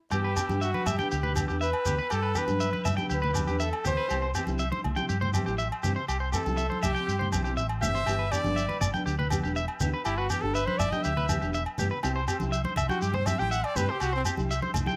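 A clear, close-miked trumpet with vibrato and scooped notes solos up front through this sunny highlife excerpt, over bright, picked electric guitar arpeggios trailed by tape echo, fingerpicked nylon-string guitar with audible finger squeak, a dark, round hollow-body bass, a very quiet tonewheel organ holding chords through a rotary speaker with key click, and percussion from ringing agogo bells, a grainy shekere and thin-skinned congas that join at 0.5 s.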